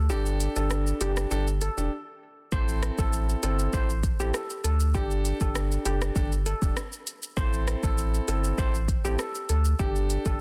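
A round, sine-like sub bass opens this hypnotic, sultry dancehall excerpt in A dorian at 99 BPM, sitting deep and up front with a fast attack and sustained, mellow notes. From 0.1 seconds the rest of the band joins inside a short break that runs until 2.5 seconds. An electronic, produced drum kit with a deep kick, smooth hi-hats, rim clicks and shaker drives a straight 4/4 groove. A bright, shimmering steel pan, struck with hard rubber sticks and touched with delay, carries the melody in a narrow upper range, while a natural-sounding concert grand piano fills out the accompaniment with a full low end. The harmony sways between Gsus2 and Am, and the dry, dense, heavily limited modern mix keeps the drums and bass close and forward.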